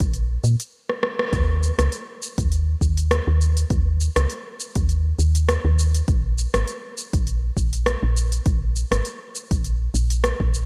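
Organic downtempo at 101 BPM with a light swing, this earthy, mystical excerpt rides on a woody, round FM bass that sits up front, its dark, soft tone striking with a fast attack, then decaying under sidechain pumping. A deep electronic kick and an organic electronic kit of smooth hi-hats, rim click and shaker both carry overdrive, with gated reverb on the kit, and a drum fill from 0.9 to 1.3 seconds includes a band accent at 1.2 seconds as the main groove takes hold. The production is bright in a 1980s digital style, with light reverb.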